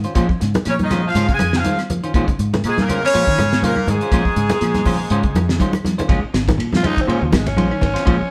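Driving and hypnotic, this afrobeat excerpt opens on a Bbm9 groove with a lightly swung sixteenth-note feel, played by a band live in one stone room with moderate reverb. A cloth-damped, thuddy drum kit with dark cymbals, a fat snare and a tight kick sits up front beside a round, foam-muted fingered electric bass and ringing, softly played congas, while very quiet woody claves tick along. A clean, picked electric guitar plays low arpeggios in the background, and a semi-hollow electric guitar adds fingered, hollow-toned stabs higher up. At 0.7 seconds a clear, punchy horn section carries the melody, backed by a second line from an edgy, raspy alto saxophone and a bright, forceful baritone saxophone with a vintage bite. After a drum fill, a growling, breathy tenor saxophone with slapback echo takes a gritty solo from 6.8 seconds.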